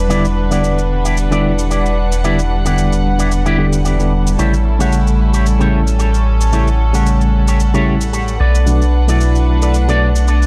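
Cosmic and sleek, this nu-disco passage glides along with a light swing, cut from a longer piece. A glossy, chorused synth bass sits up front, its mellow pulse-wave and sawtooth tone holding the low end throughout. A barky, reedy electric piano carries the accompaniment, lightly overdriven and shimmering with fast tremolo, tape echo and a vintage 12-bit sampler grit, as if heard through its built-in speakers. A bright, twangy electric guitar plays a clean, picked riff through an envelope filter, with analog chorus and tape echo, while a studio string section sustains bowed chords with light vibrato and a gut-string, period-style tone. A gritty, compressed shaker ticks quietly beneath, and a moderate plate reverb soaks the mix in a dreamy haze as the harmony moves from Em7 to A7 and then to Bm7 at 8.4 seconds.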